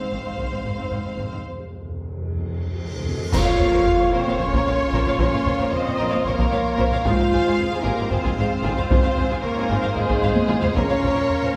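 A timpani fill opens this relentless, heroic excerpt of epic orchestral film score in Bb minor, moving along at 226 BPM in 7/8, as rich violins carry the melody over warm second violins, expressive violas, smooth cellos and lush double basses, hard-stick taiko drive the pulse, a huge dark cymbal swell and sub drop build into a dark clash-cymbal and bass-drum impact at 3.3 seconds, and distant, roomy French horns and focused sustained strings then hold chords through the resonant hall reverb to the end.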